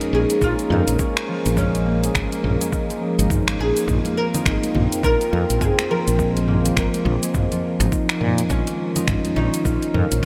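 A plectrum-plucked, woody oud carries the melody through diffuse ambient delay over a mellow tine electric piano with tape echo, a detuned vintage pad that warbles and pumps in the background, and ringing harp arpeggios, while a deep house kit of metallic hats, finger snaps, shaker and toms is roughened with overdrive; a growly, up-front fretless bass joins at 0.1 seconds, a thumpy electronic kick at 0.4 seconds, and very quiet, dry congas at 4.0 seconds, all within this earthy, swung organic downtempo excerpt soaked in huge, dreamy reverb.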